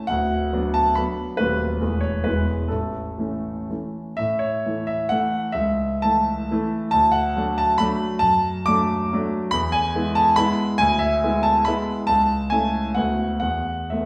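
A polished grand piano opens alone in a capricious, nostalgic romantic dance in triple time, its dotted rhythms pushed and pulled with a free rubato across a range from deep bass to bright treble. The piano's tone is warm and present, yet it sits inside a wet stone room that places the listener further back. Around 4.2 s the piece moves into a new section and drifts through gently shifting harmonies before stopping on an unresolved suspended chord, like a fragment lifted from a longer work.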